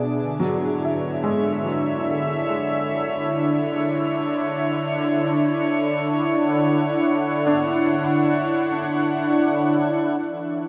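A warm, detuned analog pad sits up front, holding sustained chords with a soft attack and a moving notch, its chorus and shimmer reverb spreading it through a huge, dreamy wash of space. Beneath it a felt-muted upright piano plays mellow, intimate arpeggios with audible action noise and short sustain, sent through delay, while a glassy sine texture of drifting overtones hovers high above. This serene ambient fragment moves at 72 BPM in 3/4, resting on a single Dmaj9 chord in D lydian across its 10.7 seconds.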